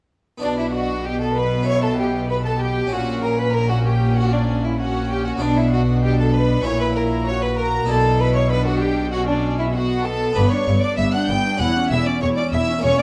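Baroque-style concerto movement in B minor at 97 BPM, stormy and dramatic, where a clear, focused solo violin carries the melody over a rich chamber violin section doubling it an octave higher and a second violin line, with a dry, close-miked harpsichord and smooth, even violas in the background, a distant cello section and an up-front, expressive double bass section grounding the bass, all in a moderate recital-hall reverb, through a brief 13-second cut from a longer piece that moves from Bm through F#7/A# to a closing C#dim/E.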